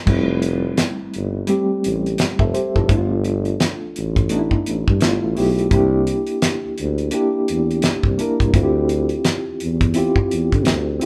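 Relaxed and soulful, this short neo-soul R&B excerpt swings lazily in 4/4 as a reedy electric piano with fast tremolo spreads rich chords like Fmaj9, G13 and Dm11, a mellow, close-miked tuba carries the bass line up front with vibrato and scooped notes in a jazz style, and a cloth-damped, thuddy drum kit with a fat snare, tight kick and dark cymbals rounds out the sound of a band playing live together in one room with light reverb.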